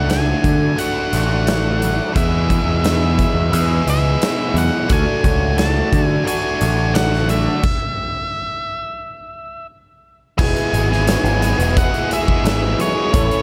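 Classic rock with a confident, driving feel, cut from a longer piece: a huge arena drum kit with punchy kick and bright cymbals and a growling, overdriven electric bass sit up front beneath a biting, double-tracked guitar riff, while a dark octave-fuzz lead guitar carries the melody. Very quiet in the background are a shimmering, octave-doubled twelve-string acoustic guitar, a shouting tonewheel organ on slow rotary holding sustained chords, and an intimate concert grand piano that enters at 4.9 seconds. The chords move from D to E and back to D before a stop at 7.6 seconds, then land on Eadd9 at 10.4 seconds, in a dry mix with little reverb.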